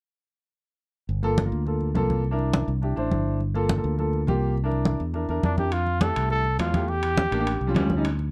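Afro-Cuban jazz, lively and sophisticated, moves at a brisk 207 BPM in F major, with fingered electric bass and close, dry congas struck with hard hands entering at 1.1 seconds and a warm grand piano joining at 1.2 seconds, setting up a Gm9 to C9 vamp. At 5.7 seconds the harmony shifts to Fmaj7, Em7b5 and A7alt as metal-shelled timbales ring out in a live room, while a mellow solo trumpet, entering at 5.4 seconds, carries the melody with light vibrato and scooped notes. Light reverb and a dark production frame this short cut from a longer piece.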